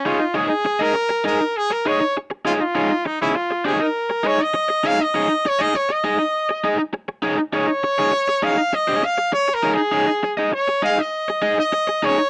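A straight 4/4 funk groove at 100 BPM sets a cool, sly mood in this short cut from a longer piece, resting on an Eb7sus4 chord. A bright, punchy trumpet takes a pop-style solo from 0.0 to 12.3 seconds between Eb4 and F5, its vibrato up front yet carrying a distant, roomy tone. A crunchy, overdriven electric guitar, picked and also up front, accompanies between Eb4 and Eb5, all captured in a dry, close 1970s-style studio sound.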